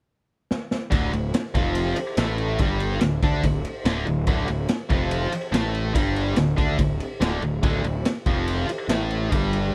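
Blues rock power trio with a southern rock edge, this gritty, brooding excerpt opens with a drum fill at 0.5 seconds before a raw garage kit of punchy kick, medium-tuned snare and ride cymbal pumps in a small room, while a tight, bright, double-tracked distorted guitar riff and a dark, round fuzz bass enter at 0.9 seconds on D minor, all three up front and dry.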